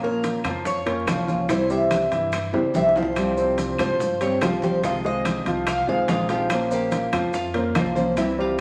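Nostalgic yet danceable, this short fragment of Cuban son and guajira moves in a straight 4/4 over a minor-leaning progression that opens on Bbm and settles on Bbmadd9. A bright, metallic Cuban tres carries the melody with picked double strings, some of them octave-doubled, while a full-bodied, fingerpicked nylon-string guitar and a warm concert grand piano, heard in short-sustained arpeggios with a deep low end, fill out the harmony. Underneath, a dark, thumpy pizzicato upright bass with gut strings sits low in the mix. Hard-handed, damped congas play from the start, with round, low-tuned bongos, ringing metal-shell timbales and grainy, saturated maracas joining at 0.2 s, and claves entering at 0.4 s; a drum fill arrives at 2.5 s. A lush large-studio reverb and a layer of vinyl crackle give the recording a vintage glow.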